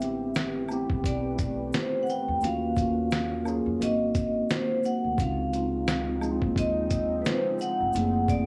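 Nostalgic and melancholic, this lo-fi hip hop excerpt at 87 BPM swings gently over an 8.5-second span as a ringing vibraphone melody with slow motor vibrato floats above a mellow tine electric piano, a deep, detuned ambient pad with chorus sits in the background, a woody pizzicato upright bass anchors the low end, a gritty, tape-warm sampler-style drum kit with a thumpy kick and fat snare sits up front, and a faint egg shaker, woodblock and group handclap add texture, all moving through chords from Am9 to F#m7b5 in a small room.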